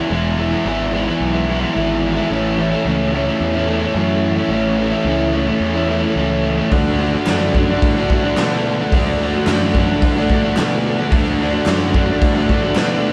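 Garage rock with a swaggering, raw attitude, this short cut from a longer piece moves at 109 BPM in a straight 4/4. An overdriven, double-tracked electric guitar sits up front playing a picked riff from the start, joined almost at once by a bright, fuzz-drenched picked bass that sounds direct and amped. The harmony moves from E to A at 2.3 seconds and then to D at 6.7 seconds, where a raw acoustic drum kit enters with a punchy kick, a medium-tuned snare and hi-hat, its sound dark and smooth with a rolled-off top in a stone room. Crisp, vintage-sounding group handclaps slip in behind at 7.3 seconds, band-limited and kept in the background. The whole thing has the feel of a band playing live together in one room, with a moderate studio reverb.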